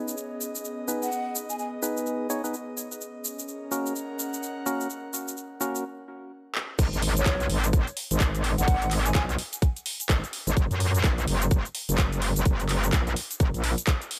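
A digital ambience surrounds this gritty, bouncy bass house excerpt, which rides a swung sixteenth-note groove. It opens on hollow, percussive organ stabs under a filter sweep, colored by chorus, cassette tape, tape echo and sidechain pumping. The stabs sit over an airy pad with a slow attack and detuned sawtooth layers, while a garage drum kit of handclaps, shaker, crash and metallic hats carries the beat. A mellow, breathy concert flute offers a brief tongued phrase with tape echo at 1.0 seconds. After a short break and a drum fill, the drop lands at 6.8 seconds, where a tight, layered electronic kick and an aggressive, saturated wobble bass take the front, the bass bright and compressed with chorus and pumping. The flute returns close-miked and a little unsteady at 7.2 seconds as the drop continues.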